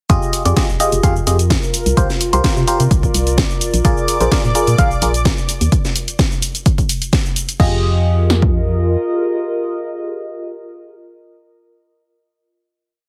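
Heavily compressed to a radio-like sheen and set in light reverb and digital ambience, this short piano house piece in F dorian runs at 128 BPM in a straight 4/4 with a bittersweet, soulful mood. Up front, a biting, barking FM electric piano plays a close-voiced rhythmic chord riff, colored by phaser, cassette tape grit, digital delay and sidechain pumping. Under it, an organ-like FM bass plays a hollow, funky syncopated line. A punchy analog drum machine drives a four-on-the-floor kick and snare, layered with a house kit of programmed hats, shaker, a cracking snare backbeat and crash. From 1.2 seconds a warbling, nostalgic tape-like pad adds slowly shifting chords with chorus and its own reverb, and from 3.8 seconds a silky, string-like analog pad briefly holds a bright high note. The harmony moves from Fm9 through C7sus4 and Bb7, and the piece settles on a final Fm9 at 7.6 seconds, after which the drums and then the bass fall away, with the electric piano and tape pad ringing on.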